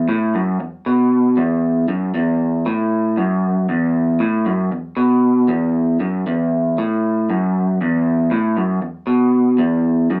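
An up-front electric guitar through a small old amp plays alone in its low register, twangy, slightly broken-up and lo-fi with a phaser on its picked notes, for 10.2 seconds of hazy, trippy rock at 117 BPM in a straight 4/4, tuned to A4 = 442 Hz and set in a moderate small-room reverb, cut from a longer piece.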